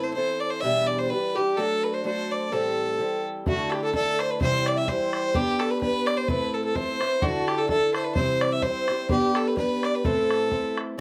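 A nasal, earthy bowed fiddle carries the melody up front in this driving, dark and lively Celtic polka in A dorian, moving at 128 BPM in 2/4 with a light swing. A hollow wooden flute with vibrato sits distant in the background on a second line, while a boxy, shimmering fingerpicked twelve-string acoustic guitar gives octave-doubled accompaniment in a small, moderately reverberant room. A boomy, vintage-toned bodhran joins at 3.5 seconds as the tune moves into its second section, and this short cut from a longer piece ends around 11 seconds.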